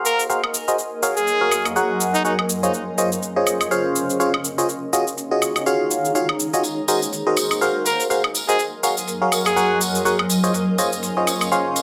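Uplifting and feel-good, this piano house excerpt moves at 123 BPM in Ab mixolydian with a swung sixteenth feel, built on a biting, percussive FM electric piano riff treated with chorus, phaser, cassette tape, low-pass filter and digital delay, over a cloudy, evolving granular pad and chords cycling through Ab9, Gbmaj9, Dbmaj9 and Ebm11. A clear trumpet with light vibrato and scooped notes carries the melody from 0.1 to 2.3 seconds and again from 7.9 to 9.8 seconds, its phrases trailed by digital delay. Up front, a tape-warm layered shaker and woodblock drive the rhythm above a gritty, barely audible breakbeat kit, with a tambourine joining at 6.6 seconds, all set in a moderate plate reverb.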